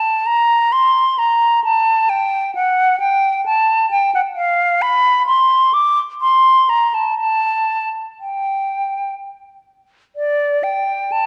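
Grave and solemn, this brief excerpt from a baroque-style fantasia in rubato triple time features an unaccompanied silver concert flute, airy and metallic with soft attacks and vibrato, sitting up front in a wet concert hall reverb, all colored by the warbly pitch drift of worn old cassette tape.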